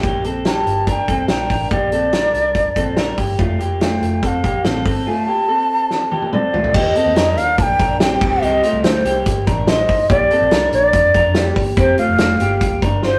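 Youthful and breezy, this short cut from a longer jangly indie pop piece moves at 143 BPM in a straight 4/4, set in Bb major. A twangy, slightly broken-up electric guitar through a small old amp picks bright arpeggios from the start, while a foam-muted, round fingered bass sits dark and low beneath it. The loose acoustic drum kit brings a fat snare, tight kick and dark cymbals with a roomy feel, and a drum fill leads from 5.9 seconds into the second section at 6.7 seconds. An airy, unsteady bamboo bansuri carries the melody from 0.5 seconds, close-miked and up front, with a soft attack and vibrato. The chords move from Bb6 through F, Ebmaj7 and Cm before landing on Fsus2, all heard in a wet stone room reverb on a rough rehearsal-room recording with a faint mains hum.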